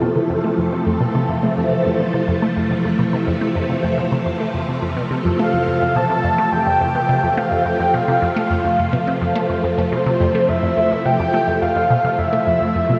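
A breathy, flute-like synth lead with gentle vibrato floats up front from 5.4 s, carrying a high melody through chorus, delay and shimmer reverb in this cosmic, expansive piece of ambient, sequencer-driven space music at 106 BPM in F major. Beneath it, a swirling vintage string machine holds sustained Fmaj7 chords with slow-attack ensemble chorus and phaser, while a juicy, squelchy blip pluck repeats a low riff with a moving notch, phaser and delay. The dreamy mix is soaked in lush hall reverb, with a faint mains hum in the background of this section cut from a longer piece.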